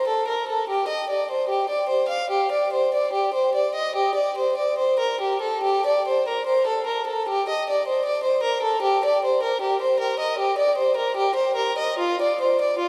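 A lone bowed violin, close and up front with a smooth, even vibrato tone, carries a solemn, flowing baroque-style suite movement in G minor at around 74 BPM with free rubato, its line ranging from F4 to F5 across 12.9 seconds of this short extract, cloaked in a long church reverb and a dark, warm production.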